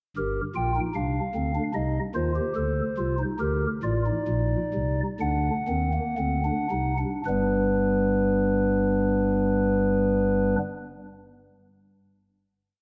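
A soft, hollow chamber organ on a stopped flute rank sits up front and plays alone through this short, serious and contemplative baroque-style fugue, weaving three imitative voices in straight 4/4 with a touch of chiff, slowing gradually until it settles on a held final chord at 7.3 seconds that lingers in a moderate concert hall reverb until the organ stops at 10.6 seconds.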